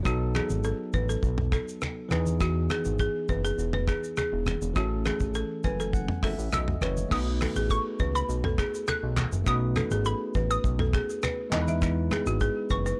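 A bell-like tine electric piano and a fat, detuned analog bass with a filter sweep and moving notch open this sunny, romantic afrobeats excerpt at 102 BPM in B mixolydian, joined at once by a woody, buzzing balafon riff, a damped 70s drum kit with a tight kick, snaps, claps and shaker, and low-tuned congas in the background, while the electric piano plays a fill from 5.3 seconds and a hollow, bouncy square-wave pluck with chorus carries the melody from 6.5 seconds over B7, Emaj7 and A chords, all captured with little reverb and a dry, gritty cassette-tape character.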